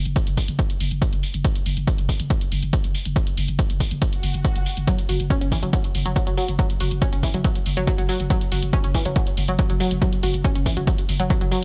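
Intense and industrial, this driving peak-time techno cut runs at 140 BPM in straight 4/4 over an F#5 chord, built on a punchy, up-front kick and a hi-hat both re-recorded in a large room, the hats pumping from sidechain, beneath a growling, buzzy 808-style bass shaped by overdrive, low-pass filtering and sidechain pumping, while a brief electronic swell at 4.2 seconds leads into an analog pluck riff from 4.9 seconds, round and nasal with a noise layer, treated with chorus, phaser, tape echo and sidechain pumping, in a dry, gritty hardware sound.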